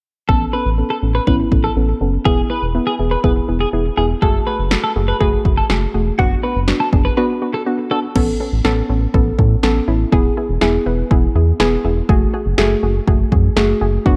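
Synth-pop with a wistful yet upbeat mood, this excerpt moves in a straight 4/4 over a cycle of Aadd9, E, F#madd9 and D6/F#. A punchy analog drum machine with a tape-warm kick, snare and crash cymbal sits up front, joined by a round, deep analog bass built from detuned sawtooth, sine and triangle tones. A soft, mellow pluck carries the accompaniment with a chorus sheen, a noise layer and ring modulation, its low-pass filter sweeping through the opening section. A clean, twangy twelve-string electric guitar adds a compressed second line through analog delay until it stops at 8.0 seconds, during a break that runs from 7.2 seconds. From 8.2 seconds the second section returns to Aadd9, E and F#madd9 with pluck, bass and drums, all within a dark production lit by light reverb and digital ambience.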